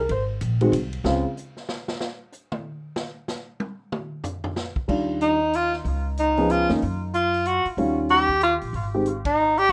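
A brief piano and woody, pizzicato upright bass figure opens this relaxed, sophisticated jazz waltz at 187 BPM in swung 3/4, giving way to a drum solo from 1.0 s on a punchy, gritty kit before the band settles into Eb major at 4.9 s. Shortly after, at 5.2 s, a clear, roomy tenor saxophone with light vibrato, scooped notes and analog delay takes the melody over up-front baby grand piano with plate reverb, and a band accent lands at 9.2 s in this rough home-demo excerpt.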